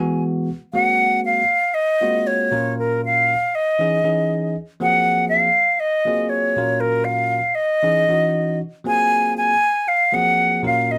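Straight 4/4 at 118 BPM drives this slick, bright jazz fragment in Ab mixolydian, where an airy silver concert flute with a tongued, straight and unsteady tone carries the melody up front over clean, bell-like tine electric piano chords cycling through Ab13, Gbmaj7/Bb and Dbmadd9, the pair captured playing live in a moderate studio room.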